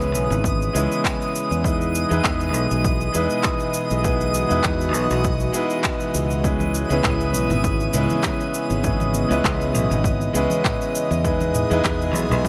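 An intimate, boxy concert grand piano sits up front, its action noise audible and its long sustain softened by a low-pass filter and a digital delay, as it comps over a smooth, relaxed sunset chillout groove at 100 BPM in C# minor, swinging gently on the sixteenths and moving between C#m7 and Emaj7. A growly, bright fingered electric bass shares the foreground, while an airy, breathy pad with chorus glows in the background and a twinkling granular texture adds octave-up shimmer. An overdriven, electronic R&B kit with handclaps, shaker and toms carries the beat, joined at 0.4 s by a punchy, layered kick drum and from 6.6 s by saturated congas tucked behind, all in a light reverb in this short cut from a longer piece.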